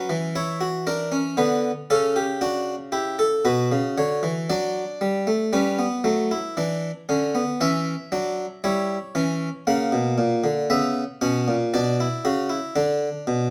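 A moderate, large studio reverb with a 1.1-second decay surrounds a lone harpsichord placed up front, its single set of strings giving an airy, plucked, round tone in the Flemish style. This is a solemn, contemplative baroque-style fugue in three parts, moving at a slow 58 BPM in a straight 4/4 and tuned to A4 = 439 Hz. The harpsichord plays alone for the full 13.5 seconds, its voices spanning from A#2 up to F#5. The harmony opens on F# and settles onto Bm, then at 5.5 seconds turns to G and a C#dim over E before returning through F# to Bm. Cut from a longer piece, the passage feels unhurried and grave, with the room's ambience lending the plucked lines a gentle halo.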